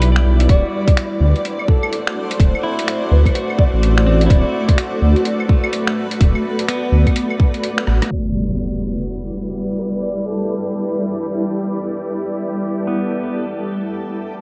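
Swung 16ths at 126 BPM in 4/4 carry this ghostly, melancholic future garage excerpt in E minor, where a tight, tape-warm electronic kick and a muffled, pitched-down lo-fi sampler kit of claves, finger snaps, hi-hat and rim click sit under a menacing, saturated detuned saw bass and a blurred granular cloud pad, both pumping against the beat, while a clean, picked electric guitar with tape echo and a breathy flute-like synth lead with chorus and vibrato hover in the background, until a drum fill at 7.9 s gives way to an electronic impact at 8.1 s and a reversed, very quiet swelling texture drifts in at 10.7 s within a dreamy, cassette-hazed, low-passed mix drenched in huge reverb.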